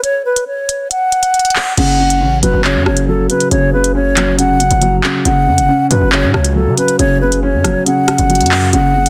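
Ominous and tense, this half-time drill excerpt opens with a brief break in which an airy, hollow concert flute carries the melody over the drum kit, sounding its first note at 0.0 seconds. The flute sits up front with vibrato and tongued articulation, while the kit supplies crisp hi-hats, handclaps, rim clicks and crash cymbal, all coloured by a vintage 12-bit sampler grit. At 1.8 seconds a dark, intimate grand piano joins as accompaniment, its boxy low register and audible action noise adding a mellow weight beneath the flute. The distorted 808-style bass arrives at the same moment, heavy and saturated, with a fast attack, a noise layer over its sine core and an aggressive, decaying tone that pushes to the front of the mix. A small room reverb surrounds the ensemble, and the dense, heavily limited modern master keeps the whole passage loud and tightly packed until it is cut off at 9.1 seconds.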